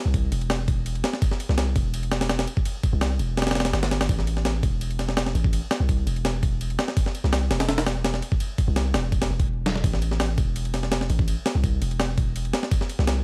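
Drum and bass with a jungle flavour, this short excerpt runs at 167 BPM in A minor with a straight 4/4 feel and a raw, nostalgic mood. A sampler-style breakbeat kit sits up front, its compressed, pitched-up hits sounding gritty and tape-warm, with a thumpy kick, a medium-tuned snare and a ride cymbal, all in a small room reverb. Beneath it, a long sustained 808-style bass carries the low end between E1 and C2, a deep sine tone with a fast attack that decays, also placed up front. Both parts play together from 0.1 seconds until the cut at 13.2 seconds. The overall sound is fairly dry, with vinyl crackle lending an aged, dusty texture.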